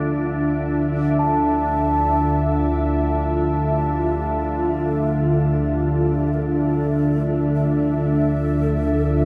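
A vast, echoing space with a huge, wet reverb wraps this desolate, cavernous ambient excerpt, cut from a longer piece and moving at a slow, straight pace. Up front, a deep, full-bodied analog pad holds dark, detuned sustained chords on a D minor add-nine harmony, its chorus and shimmer reverb giving it an evolving, moody glow. Beneath it an organ-like drone sits calm and sustained in the low register, colored by ensemble chorus and its own built-in reverb. A quartz singing bowl, struck with a felt mallet, adds a pure, ringing texture with slow beating, mid-forward in the blend and bathed in shimmer. At 1.2 seconds a breathy, hollow shakuhachi enters in the background, its chiff and gentle vibrato trailing into shimmer reverb and diffuse ambient delay as it carries a narrow, mellow melody to the end.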